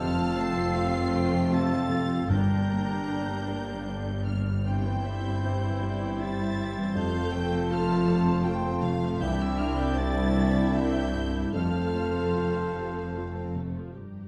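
A sorrowful, moving film-score passage in three, played with rubato, opens with the orchestra together: a lush violin section carries the high melody over a focused second violin line, while a woody baroque flute and a clear oboe add inner lines in the background, joined by a distant, very quiet clarinet. Beneath them, a deep-bassed grand piano with short sustain and an intense viola section supply accompaniment, a mellow, vintage French horn section holds chords, and bowed cellos and even-toned double basses anchor the bass. Soft-mallet timpani with a round tone sound briefly from 2.3 to 3.4 seconds, and a wet scoring-stage reverb and dark production give the recording a cinematic depth.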